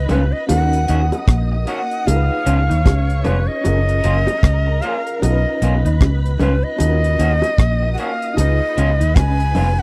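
A breathy, bright shakuhachi carries the melody from the opening moment, its reedy, vibrato-laden tone with a crisp chiff trailed by tape echo, while a silky string machine holds a soft second line in the background and a mellow FM electric piano with tremolo adds echoing accompaniment beneath. A dark, round, foam-muted bass sits up front from the start, giving this bittersweet lovers rock reggae excerpt its longing weight. Just after, at 0.1 seconds, two slightly broken-up electric guitars through a small old amp join: one plays a lo-fi picked riff with analog chorus and tape echo, the other adds compressed stabs bathed in lush chorus further back. A deep, dry reggae kit with a tight kick, hi-hat and rim click drives the swung groove up front, joined by high-tuned bongos played with soft hands and touched by tape echo. The harmony moves through Ebm7, Db7, Gbmaj7 and Bmaj9#11 before circling back, all captured in a close, dry 1970s-style studio sound.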